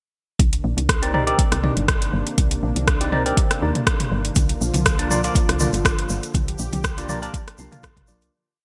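Over a four-on-the-floor electronic kick at 121 BPM, with a slight swing on the sixteenths, this hypnotic afro house piece in C minor adds a deep house kit of metallic hats, rim clicks and toms in gated reverb. A soft, woody FM bass riff and a detuned sawtooth pad with chorus both pump beneath chords moving from Cm9 to Bb. From 1.0 s a bright tine electric piano, heard through a combo amp with phaser and digital delay, plays syncopated rootless chord stabs up front; at 4.4 s background congas and a grainy egg shaker in hand-played sixteenths join, all set in light digital ambience with a 1980s-style production that fades out from 5.7 s.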